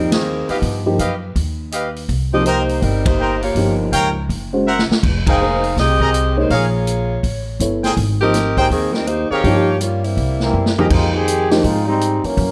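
A mellow saxophone section carries the melody up front in this brassy big band swing excerpt at 163 BPM, with trumpets adding vibrato-tinged stabs and band accents punching through. A dark baby grand piano comps through rich jazz harmony while a woody, thumpy pizzicato upright bass and a punchy, natural drum kit keep the swing moving, with short drum fills along the way. At 10.9 seconds a clear, tight trombone section steps forward for a brief solo, all set in a moderate large-studio reverb.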